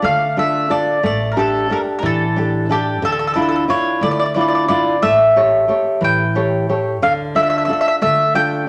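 This Italian folk serenade in D harmonic minor sways in 6/8 at 60 beats per minute, counted in dotted quarters, with a romantic, passionate mood. The picked mandolin carries the melody between G4 and G5, its doubled strings giving a round, up-front tone. Beneath it, a fingerpicked nylon-string guitar with fresh strings supplies the accompaniment, sounding warm, deep and classical while sitting close to the listener. An upright bass played pizzicato anchors the low end with a woody yet bright steel-string tone, lower in the mix than the other two. The harmony moves from Dm through A7sus4 and Dmadd9 to A7 before settling back on Dm at 7.0 seconds. A generous large-studio reverb surrounds the trio across this 8.7-second fragment of a longer piece.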